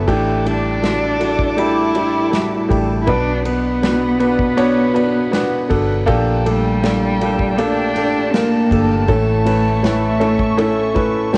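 This section of a longer pop ballad opens at 80 BPM in a straight 4/4, with a mellow, woody upright piano sitting up front, carrying the accompaniment alongside a fingerpicked jumbo acoustic guitar playing arpeggios through analog delay in the background. Beneath them, a round, foam-muted electric bass holds the low end. A bowed studio string section sustains reedy, gut-string chords above, and an unplugged acoustic drum kit played with bundle sticks joins at 0.1 seconds with punchy kick, medium-tuned snare and ride cymbal. From 0.5 seconds a single bowed cello takes the melody with vibrato and a smooth top, its tone dark and woody. The harmony moves from A7sus4 through Bm and Gmadd9/Bb to A, giving the passage a hopeful, emotional cast. Recorded at home on cassette with light small-room reverb, the piano, guitar, strings, drums and cello carry the soft grain of tape.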